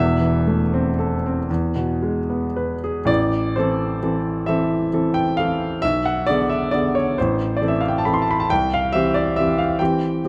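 A grand piano, heard up front and intimate, carries this melancholic, wistful romantic nocturne entirely on its own, with the soft noise of its action audible beneath the natural tone. The pulse is slow and flexible, moving in 6/8 at roughly 36-47 beats per minute counted in dotted quarters and stretched freely with rubato. Set in A minor, the music spans from deep E1 bass notes up to C6, opening over an A minor chord with E in the bass before turning to E major. At 3.1 seconds a second section begins on A minor, passing through G# diminished over B and back to A minor before moving to C major. Close, detailed microphones catch the instrument's warmth while a moderate recital hall reverb adds a gentle halo, and the passage, cut from a longer piece, ends at 10.3 seconds.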